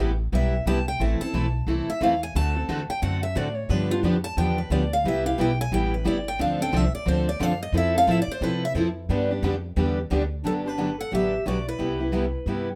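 A bright, up-front steel-string acoustic guitar carries the melody of this playful, charming stretch of acoustic string swing, taking a solo from the opening moments over the accompanying parts already in place around it. Underneath, a second steel-string guitar with fresh strings and a dreadnought body picks out accompaniment alongside a picked archtop guitar whose finger squeak adds a touch of texture, while a woody, thumpy upright bass on gut strings sits close and dark in the mix. The swung eighth notes give the harmony a buoyant lilt as it moves from Cmaj7 through minor and dominant chords before settling toward a new section. At 10.4 seconds a breathy, whispered clarinet slips in as a second line, its subtone, vibrato and scooped notes sounding distant and roomy against the nearer strings. Light reverb lends the whole ensemble a gentle sense of space in this short excerpt cut from a longer piece.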